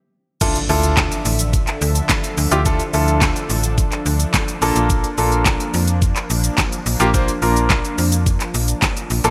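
After a brief stop, a bittersweet, energetic dance-pop drop lands at 0.4 seconds with a very quiet electronic impact, a polished, up-front baby grand piano accompaniment, smooth, mellow detuned supersaw chords with lush chorus, and a layered pop drum kit with a knocking kick, fat snare, crisp hats, handclaps, shaker and crash; a snappy, slap-like FM bass with a metallic attack joins at 0.7 seconds, while piano, supersaw and bass share a sidechain pumping, a barely audible, band-limited vintage group handclap sits beneath, and light reverb colours a bright 1980s-style digital production moving from Dmadd9 to Bbmaj7.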